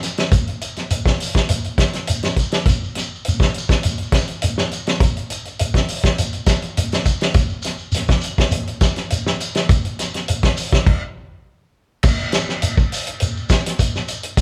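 A straight 4/4 afrobeat groove at 102 BPM, funky and driving, rides on an up-front, mid-forward soul drum kit with a fat snare, tight kick, hi-hat and crash under a rolled-off top, while a grainy, mellow shekere sits distant in the moderate reverb of a large studio where the band plays live together, until a stop from 10.9 to 12.0 seconds gives way to a new section that carries this excerpt through to 14.4 seconds.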